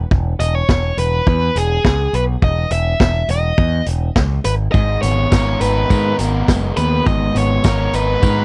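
A growling, overdriven picked bass opens this upbeat yet wistful indie rock excerpt at 104 BPM, joined almost at once by a punchy, mid-forward vintage drum kit with a rolled-off top and, at 0.4 seconds, a warm overdriven electric guitar carrying the melody over Emaj7(no3). At 4.5 seconds the harmony moves to G#madd9, and at 4.7 seconds a bright, crunchy double-tracked guitar riff enters alongside a jingly tambourine set in the background. The sound is dry and close, like a 1970s studio recording, with the bass, drums and lead guitar up front.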